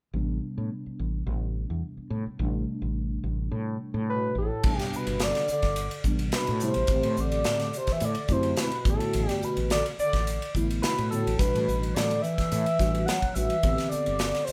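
A lightly reverberant, live-in-one-room sound frames this intense, funky electric jazz fusion excerpt in A dorian at 107 BPM, where a mellow tine electric piano and a dark, round fretless electric bass open over Am11 and D7sus4/A chords, a gritty, screaming synth lead with chorus and a breathy bass clarinet in the background enter at 4.1 seconds, and a polished studio drum kit with a tight kick joins at 4.6 seconds as the harmony moves through Bm7/A and Em9/A.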